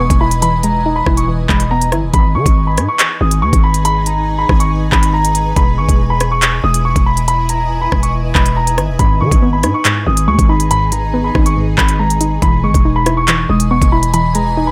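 A dark, menacing drill beat at 140 BPM in a half-time 4/4 feel opens on a mellow, deep-toned concert grand piano carrying a high melody through a low-pass filter, set over a cloudy granular pad and a growling 808-style bass. The drill drum kit enters almost at once and sits up front, with a knocking kick, crisp hi-hats, handclaps and rim clicks driving the track. The buzzy, fast-attacking 808 is the loudest melodic element, its decaying notes anchoring the G# minor harmony as the chords move between Emaj7 and G#m. A soft, round pluck with chorus and a filter sweep adds gentle accompaniment at the start, drops out at 2.1 seconds and returns at 9.0 seconds. Beneath everything melodic, the detuned, evolving pad stays blurred and low in level, its slow attack and long release held in its own built-in reverb. Light digital ambience frames this short cut from a longer piece.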